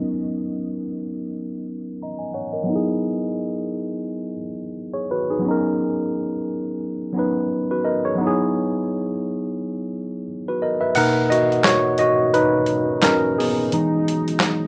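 Lo-fi hip hop at a cosy, mellow 87 BPM in B major with a light 16th-note swing, where a worn, barky, slightly out-of-tune tine electric piano, up front through a combo amp with cassette-tape colour, alternates Bmaj9 and Emaj9 chords under a filter sweep before taking a solo at 11.0 seconds, as a gritty, compressed sampler-style soul kit of snare, hi-hat, handclaps and crash enters at 10.9 seconds, and a deep, moody detuned pad with chorus and reverb sits dark in the background from 12.2 seconds, all in a rough home-demo mix with moderate room reverb.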